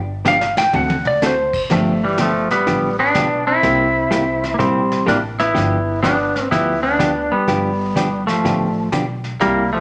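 A large studio room with moderate reverb gives this short cut from a longer western swing tune a roomy, down-home glow. The clean lap steel guitar sits up front carrying the melody with its twangy, compressed slide tone, while an electric slide guitar solo fills the first 1.7 seconds. The vintage brush drum kit plays with a smooth, rolled-off top, brushed snare and a tight kick, and adds a fill between 0.3 and 1.2 seconds. Underneath, a woody, thumpy pizzicato upright bass and a dark, hollow-body jazz guitar fill out the accompaniment over chords moving from G7 and D7 into G9, C7 and back to G7. The feel is playful at 125 BPM in 4/4 with a swung eighth-note lilt in G mixolydian.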